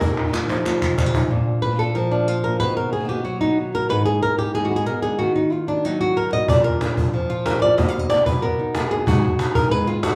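A wet, large studio reverb washes over the ambience of a band playing live in one small room, in this fiery, passionate flamenco piece cut from a longer performance. It moves at a brisk 186 BPM in straight 4/4, in Bb phrygian dominant. A boxy, fingerpicked flamenco guitar carries the melody up front, with audible finger squeak, while a second fingerpicked guitar adds stabs beneath it. At the start, a snappy cajon with snares plays a fill alongside crisp, band-limited palmas hand claps. From 1.3 seconds the nylon-string guitar takes a solo over chords moving from Bb through Bmaj7, Abm and Ebm. The cajon drops out and returns at 6.5 seconds, sounding distant yet present, to drive the solo to the end.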